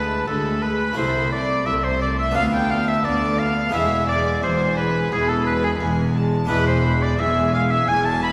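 A lush concert-hall reverb with a long 2.3-second decay surrounds this stormy, driving passage from a baroque-style concerto movement in straight 4/4. Up front, a clear solo oboe carries the melody with vibrato and a smooth top, while a violin section also plays the melody higher up from the background with a close, warm, gut-string tone. A second violin section, rich and reedy in period style, plays a second line in the oboe's own register. Beneath them, a round Flemish-style harpsichord and a quiet viola section fill out the accompaniment, while a full-bodied double bass section and a bowed cello section carry the bass. All seven parts play together for the full 8.3 seconds, with the harmony moving to E at 3.7 s and to E7 at 6.5 s.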